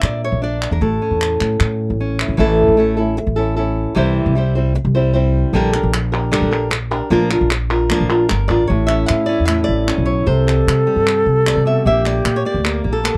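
Flamenco at 152 BPM in a straight 4/4, intense and passionate, cut from a longer piece. A bright, fingerpicked flamenco guitar with fresh strings carries the melody up front throughout, ranging from A2 to F5, while a woody, thumpy upright bass on gut strings plays pizzicato beneath it, dark and equally close. Crisp palmas hand claps, heard in a small room, sit lower in the mix, dropping out at 2.4 seconds and returning at 5.7. At 8.7 seconds a mellow wooden flute joins with a pure, tongued second line between E4 and A4, expressive and touched with vibrato. The harmony moves through Bb, A, C and Gm/Bb, with a C5 chord appearing late, and the whole has the dry, close feel of a 1970s-style studio recording with light reverb.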